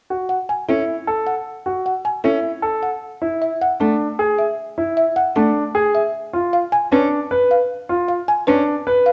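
A straight, propulsive 4/4 pulse at 154 BPM drives this bright minimalist classical excerpt in A major, where a clear concert grand piano with long sustain spins arpeggios, a woody, round marimba played with soft mallets carries the up-front melody, and a smooth, bowed cello with light vibrato adds accompaniment, all bathed in a wet large-studio reverb and a worn, warbling cassette-tape drift as the harmony moves from A through Dsus2 to C#7b9.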